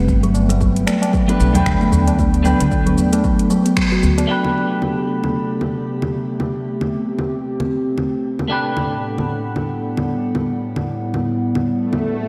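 A mellow, ringing kalimba spins arpeggios over a warbly, lo-fi tape-like pad and woody pizzicato upright bass in this mystical, meditative organic downtempo excerpt at 114 BPM in A dorian, while an overdriven electronic kick, a deep house kit of congas, finger snaps, metallic hi-hat and shaker, and dry, high-tuned tabla swing beneath; a bright, twangy clean electric guitar with harmonic tremolo and delay enters at 1.3 seconds, and once kalimba, bass, kick and tabla drop out by about 4.3 seconds it drifts with the pad and kit over Gmaj9 and Am9 chords in a dreamy hall-reverb haze until an up-front electronic swell arrives at 11.8 seconds.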